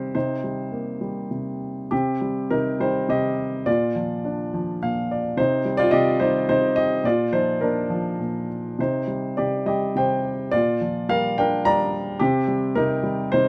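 Classical solo piano in a lyrical vein, this short excerpt from a longer piece sits in C minor with a moody, cool atmosphere. A grand piano carries everything alone, its tone warm and up front, ranging from Bb2 to Bb5 across the 13.5 seconds. The pulse moves in 3/4 at roughly 99-111 BPM, pushed and pulled by a rubato feel. The harmony rocks between C minor colours and Bb, passing through Cm7, Bb, Cm and Bb6 before settling back on Cm at 12.2 seconds. A brief piano fill at 4.5 seconds adds a small flourish between chords. Close, detailed microphones and light reverb keep the sound intimate.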